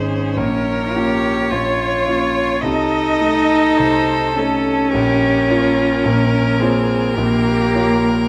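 Solemn and yearning, this slow romantic movement for piano quartet drifts at 53 BPM in 4/4 with a rubato feel, moving from B-flat minor through A diminished over C and back to B-flat minor. A rich, focused violin with vibrato carries the melody while a smooth, even cello sits up front on the second line, and a clear viola and a concert grand piano with deep bass and natural tone supply the accompaniment. Close, detailed microphones capture the players in a recital hall with moderate reverb, in a short passage cut from a longer piece.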